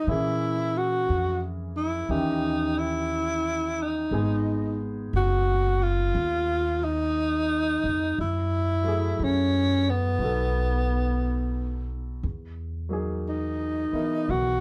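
A breathy tenor saxophone and a warm grand piano open this melancholic, smoky jazz ballad excerpt at a slow 59 BPM with a gentle swing, joined at 0.1 seconds by a woody, thumpy pizzicato upright bass. The close-miked saxophone carries the melody up front in a mellow, whispered voice with soft attacks and vibrato. The piano's deep-bassed accompaniment sits further back under chords moving from Bbm7b5 and Eb7b9 through Abm7 to a closing Emaj9#11, all in a moderate studio ambience.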